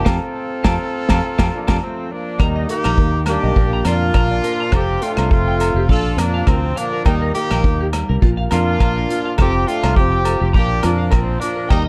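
Highlife guitar band music in Bb major at 103 BPM with a swung sixteenth feel, joyful and sunny, cut from a longer piece that opens with a band accent capped by a drum fill before settling into a groove from 2.4 seconds. A tight, up-front horn section carries the melody over a breathy, subtoned alto saxophone second line, while a round, foam-muted fingered bass and a punchy vintage kit with a rolled-off top drive the pulse in a small, pumping room. Twangy clean electric guitar arpeggios with analog delay and saturated agogo bells sit in the background, a very quiet fingerpicked flamenco guitar adds accompaniment, and a piping tonewheel organ with slow rotary speaker and key click appears only at 11.7 seconds.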